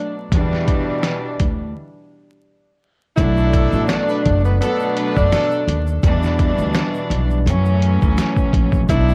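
Moody and tough, this boom-bap hip-hop excerpt in a swung 4/4 pairs a breathy, scooped jazz tenor saxophone melody with tape echo against a nasal, reedy chamber string section bowing period-style accompaniment, while a woody, growly pizzicato upright bass and a muffled, pitched-down sampler-style drum kit with a thumpy kick sit up front from 0.3 seconds. A break opens at 1.7 seconds, and a grainy egg shaker enters at 3.2 seconds. A clear, punchy horn section adds background stabs over Bm7 from 3.5 to 5.6 seconds, before the chords move on to Em7 and F#m7. The whole has a lo-fi home-cassette character, with light reverb and vinyl crackle.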